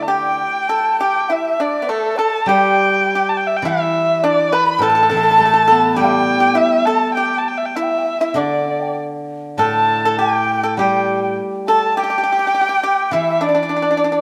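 Graceful and pastoral, this fragment of traditional Chinese chamber music unfolds with a loose, rubato feel in 4/4. Up front, a single dark, woody erhu carries the melody with vibrato and portamento. A breathy low bamboo xiao and a dry, percussive fingerpicked pipa trace second lines, while a ringing, silvery steel-string zither supplies accompaniment beneath them, all four playing throughout. A wet spring reverb places the ensemble further back in the room.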